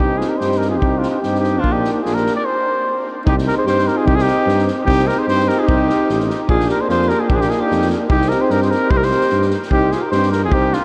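A mellow cornet leads up front with tape echo over a fiery, bittersweet Balkan brass band groove in C minor at 149 BPM in swung 2/4, alongside a soft-edged alto saxophone second line that also carries tape echo, a clear, punchy, distant trombone, a smooth euphonium, a mellow tuba bass and a roomy acoustic drum kit played with bundle sticks, everything in the mix soaked in huge, dreamy reverb with a cassette haze, and the band cuts to a full stop from 2.5 to 3.3 seconds before returning on C minor.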